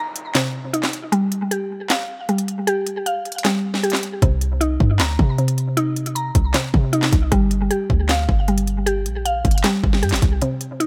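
A woody, round mallet-like synth pluck with chorus and digital delay opens this melancholic, dark trap excerpt in C minor at 155 BPM with a half-time feel, playing arpeggios over Cm7 and Fsus2/G while a very quiet electronic downlifter sounds until 1.1 seconds and an up-front trap kit of hard-clipped kick, sharp snare, handclaps and crisp hats enters at 0.2 seconds, before a deep, boomy 808-style bass with a noise layer arrives at 4.2 seconds, the whole mix sitting in light reverb.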